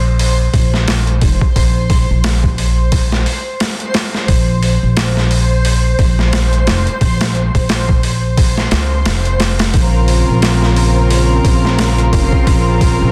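A woody, growly upright bass sits up front in this hypnotic, cinematic trip hop excerpt, its pizzicato notes dark and thumpy as the harmony moves from Bbsus2 to Fsus4 at an easy 88 BPM with a gentle sixteenth-note swing. Beside it, a pitched-down, sampler-style boom bap kit supplies a compressed, overdriven beat of hi-hat, a high-tuned snare and a thumpy kick, gritty and re-recorded in a large room. Underneath, a reversed, detuned texture hovers on a single high note, its dreamy, granular sustain blurred by its own reverb and a long release. At 9.7 s, a dark chamber string section enters with soft-attack, sul tasto bowed chords, intimate and close, with light vibrato and a coat of vintage 12-bit sampler grit. The whole piece sits in a digital ambience with a dense, heavily limited modern master.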